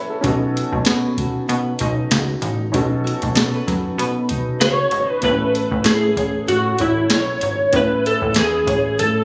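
The rhythm settles at 96 BPM in 4/4, with a gentle swing on the sixteenths that gives this hazy, laid-back slice of indie and bedroom pop its loose sway in A lydian. A soft vintage rhythm box sits up front from 0.2 seconds, its deep kick, tonal snare and metallic hats sounding electronic and analog, while a plucky analog bass, punchy and funky with a fast-attack filter pluck and a moving notch, joins at the same moment. Underneath, a dark, full-bodied nylon-string guitar is fingerpicked with a subtle chorus and vibrato, alongside a worn, woody, slightly detuned upright piano, both carrying the accompaniment from the very start. At 4.6 seconds an electric slide guitar takes the melody, played with fingerpicks, compressed and slightly broken-up, wrapped in an ensemble chorus and standing out at the front of the mix. The harmony moves from B7 to Aadd9 as the second section begins at 5.2 seconds, and light reverb, compression and the close, homespun sound of a phone recording in the room give this short cut from a longer piece its intimate, lo-fi character.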